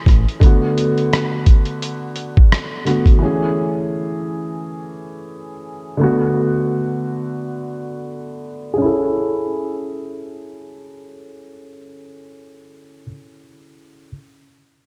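Lo-fi hip hop in A major at 86 BPM with a lazy swing, this dreamy, mellow fragment is cut from a longer piece and sets a felt-muted upright piano, soft and intimate with audible action noise and a cassette-tape haze plus a filter sweep until 8.8 seconds, over Bm7 and Amaj7 chords, while a compressed, pitched-down sampler-style drum kit with a thumpy kick, hi-hat and rim click plays only until 3.2 seconds, all steeped in a lush hall reverb.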